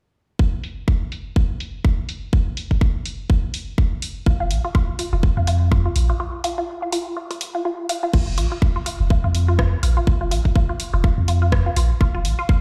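A squelchy, nasal blip pluck at F4 bubbles through this quirky, cool stretch of minimal techno, cut from a longer piece. It carries the riff from 4.3 seconds, with a resonant filter snap, short decay, detuned sawtooth bite and a noise layer, colored by phaser, delay, cassette tape grit and sidechain pumping. A tight, layered, tape-warm electronic kick drives a 124 BPM pulse in 4/4 with a 57% swing on the sixteenths. Alongside it sits a quieter analog drum machine of hi-hat, rim click and crash cymbal, its hats, cymbals and snare softened by low-pass filtering. A deep sine sub bass with a pitch-drop attack enters with the pluck, ranging from F1 to F2 and pumping under the sidechain. A break arrives at 6.2 seconds before a second section takes over at 8.1 seconds, and the mix stays fairly dry while the room suggests a big sound system in a bare space.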